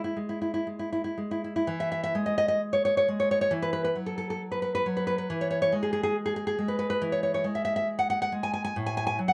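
Romantic classical guitar in E major, this warm, nostalgic solo for fingerpicked nylon-string guitar moves in a rubato 4/4 at roughly 58-71 BPM, spanning from A2 up to G#5. The acoustic guitar sits up front in a moderate studio ambience, its tender harmony settling on E before shifting through Esus24 at 3.5 seconds and E6, then reaching F#m/A near 8.8 seconds. The brief passage, lifted from a longer piece, opens with a short phrase before a second section begins at 1.7 seconds.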